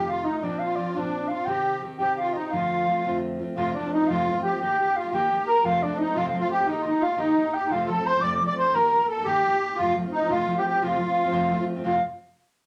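Set in a wet studio reverb, this cheerful, bright Celtic jig at 116 BPM in 6/8 and F mixolydian puts a reedy baroque flute with vibrato and a soft attack on the melody, while a shimmering musette-tuned accordion with a boxy character carries the second line and a full-bodied fingerpicked steel-string dreadnought guitar supplies the accompaniment, moving from an opening phrase into a new section at 3.6 s that alternates between F and Eb chords in this passage cut from a longer piece.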